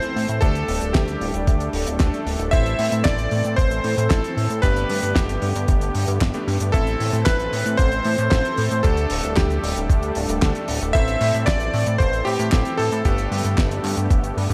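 A bright, cutting electric grand piano melody with digital delay opens this melodramatic, bittersweet italo disco excerpt in A minor at 114 BPM, over a lush, detuned sawtooth pad with chorus, clangy electric grand piano stabs in the background, and a damped, dark 70s drum kit of cabasa, handclaps, hi-hat and fat snare with gated reverb, before a glossy, nasal chorused synth bass enters at 0.2 seconds and a gritty, thumpy electronic kick punches in up front at 0.4 seconds beneath chords moving from Dsus4 to Am to Gadd9.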